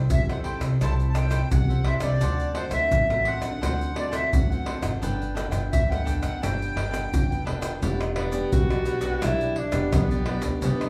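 Heard from further back in a small room and bathed in a wet studio reverb, this playful, lively samba-and-choro fragment from a longer piece moves at 86 BPM in a straight 4/4, starting in G major over Am, D7 and Gadd9 chords. A crisp, bright cavaquinho is picked high in the texture, while a classical nylon-string guitar, thumb-plucked and sitting in the background, fills the middle. Beneath them a woody pizzicato upright bass anchors the harmony. Up front, an egg shaker, pandeiro and tamborim ride over a deep surdo. A reedy, sweet accordion with a light tremolo tuning and a boxy tone carries the melody until 7.4 seconds. The music then turns to E minor on an Em7 chord, and from 8.2 seconds a breathy tenor saxophone takes a mellow, jazz-style solo with subtone, vibrato, scooped notes and a soft, whispered, intimate attack that sounds distant and roomy.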